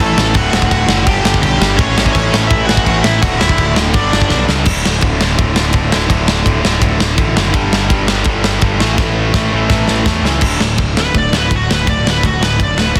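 A straight, driving 4/4 beat from a big, punchy, up-front acoustic drum kit with a medium-tuned snare and rolled-off top, including fills at 4.3 and 9.0 seconds, powers this upbeat, rowdy punk rock excerpt, where a fuzzed, direct-and-amped electric bass and a stack of background riffing guitars (a cranked stack guitar, an overdriven electric guitar and a very quiet double-tracked one) churn beneath a smooth, bright overdriven lead guitar that carries the melody and returns for a solo at 10.4 seconds, all in a dense, heavily limited modern master with light reverb.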